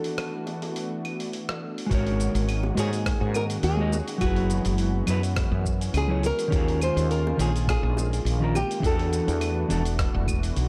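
Swung at 104 BPM in 4/4, this relaxed, blissful sunset chillout excerpt opens with a bright, fingerpicked nylon-string guitar melody and a clean, fingered mellow electric guitar, both with digital delay, over a thick, warbling, detuned unison pad with chorus, gritty tape-toned sampler-style claves, hi-hat, rim click and shaker, and very quiet high-tuned bongos from 0.5 seconds, before a growly, round fretless bass and a thumpy electronic kick arrive at 1.9 seconds as the sus4 ninth chords move through a dark, lightly reverberant mix.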